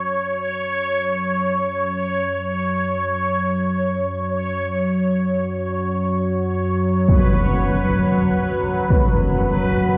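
Free of any fixed pulse, this dark ambient drone unfolds in open, unmeasured time, its unsettling, desolate mood hanging in a cavernous cathedral reverb with a 6.2-second decay. An up-front analog drone, spanning F#2 to F#3, fades in across the first 10 seconds, its sawtooth, pulse and triangle waves shaded by pulse-width modulation, ring modulation and chorus into an evolving, slow-blooming tone with a long release. Above it, a bubbling stepped-filter texture sits between B4 and C#5, its detuned, resonant sawtooth stepping through random filter changes under chorus, built-in reverb and shimmer reverb. At 7.1 seconds a huge, bright impact lands up front, rounded by a low-pass filter, and sounds until 9.1 seconds. The whole passage rests on an F#5 chord and is cut from a longer piece.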